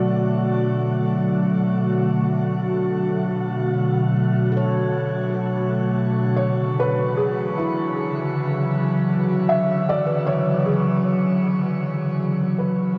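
Spacious and melancholic, this ambient passage cut from a longer piece rests on a glassy, ethereal FM pad holding sustained chords up front with ensemble chorus, while a ringing, meditative handpan fades in with arpeggios in the background under a diffuse delay, and at 6.4 s a muted, intimate felt-muted upright piano enters with a dark, boxy melody over the move from Bm7 to E13, the mix washed in a long shimmer reverb before the fade-out from 10.5 s.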